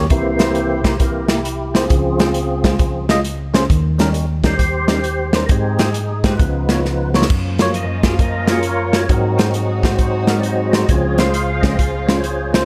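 Uptempo gospel in Ab major at 133 BPM, swung in 4/4 with an uplifting, hopeful mood, this excerpt is cut from a longer piece. A percussive tonewheel organ carries the lead throughout, its fat, lightly overdriven tone marked by key click, chorus vibrato and a slow rotary speaker as it moves through chords from C7 and Dbmaj7 to Gbmaj7 and Ab7. Beside it, a bell-like tine electric piano with a phaser supplies bright, clean accompaniment, while an airy, polished acoustic drum kit with a punchy kick, medium-tuned snare, hi-hat and crash sits up front and plays a fill from 6.8 to 7.3 seconds. At 7.3 seconds a studio string section enters in the background, its soft, floating sul tasto chords adding a gentle bowed glow. The whole is set in moderate scoring stage reverb with a touch of small room ambience.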